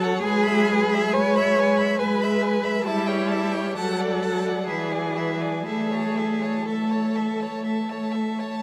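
A huge, wet reverb fills the recording, setting a string quartet in a vast, echoing space where each note lingers long after it is bowed. This is a slow romantic movement in A major and 3/4 time, moving at 59 to 71 BPM with a supple rubato and a tender, serene mood, heard as a brief passage from a longer piece. The first violin carries the melody high above a second violin line, both played with smooth, even bowing, vibrato and a rich tone. Beneath them, the viola sits up front with a warm, expressive accompaniment, colored by vibrato and portamento, while the cello holds the bass with a soft attack and the same sliding, expressive vibrato. The harmony moves from E/G# through A7/G, D/F# and E7 before settling on A at 5.7 seconds, and all four players fall away by around 8.6 seconds.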